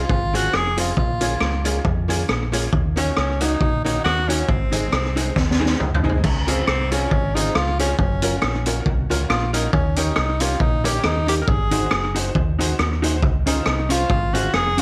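Bouncy and upbeat, this ska excerpt moves with a light swing in 4/4, cut from a longer piece. A breathy, clear tenor saxophone carries the melody up front in a pop style, while a round, punchy fingered electric bass anchors the low end. The raw garage drum kit comes in at 0.1 seconds, gritty and saturated with a high-tuned snare, boomy kick, rim clicks, hi-hat, toms and crash cymbal, and a drum fill from 5.4 to 6.2 seconds leads into the repeat of the opening section. Sitting in the background, a mellow, dark electric guitar with subtle chorus and slapback echo supplies accompaniment, and a jangly, metallic tack piano adds short percussive stabs, also touched by slapback echo. The harmony starts on Dbmaj7 and later passes through Gbmaj7, Eb7 and Ab7, all heard in a small room with light reverb.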